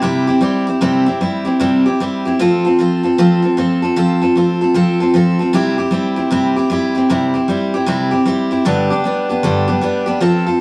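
A swung eighth-note feel drives this rowdy, retro rock piece at 153 BPM in 4/4, set in C major and moving through C, F, back to C and then G. A lone picked steel-string acoustic guitar carries the whole 10.6-second excerpt, its fresh strings sounding bright and full-bodied as it sits up front across a range from G2 to A4. A wet studio reverb with a short tail gives it the feel of a band playing live together in one room.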